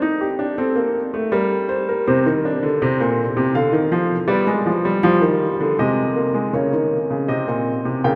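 A single D5 on a polished, up-front baby grand piano opens this contemplative, serious fragment of a baroque-style three-part fugue in 3/4, the solo piano moving through Gm, Cm, Dm7 and G7 before turning to Bbm/Db at 6.5 seconds and coming to rest on Bbsus24, the performance bathed in a long, wet cathedral reverb that sets it in a church or concert hall.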